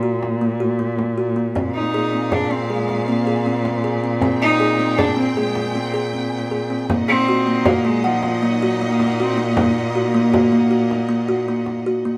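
Light reverb surrounds this restless, shimmering excerpt of contemporary chamber music in 7/4, where a woody kalimba plays plucked arpeggios over a veiled, con sordino cello anchoring the bass and the soft hands of a frame drum. At 1.6 seconds a dark, lush symphonic string section adds sustained chords, and moments later a nasal, earthy solo cello takes the melody with light vibrato, sounding distant.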